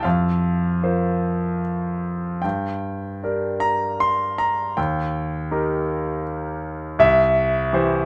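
Moving in rubato 3/4 at 74-82 BPM, this brief reflective, dark classical fragment in G minor features a bright concert grand piano alone, brilliant and intimate with deep bass, long sustain and audible action noise, sitting up front in light reverb as it moves from Fsus4 through Gm and Eb to C over 8.1 seconds.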